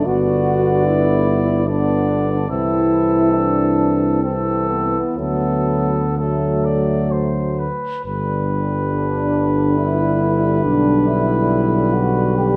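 Classical, hymn-like brass band music in G major and 3/4, tender in mood and moving at a rubato 59-76 BPM, with a distant, warm flugelhorn carrying the melody over a tight, mellow French horn section with light vibrato on the second line, a clear euphonium and a vintage-toned trombone accompanying in the background, and an up-front tuba with a soft attack on the bass, all set in a moderate recital hall reverb.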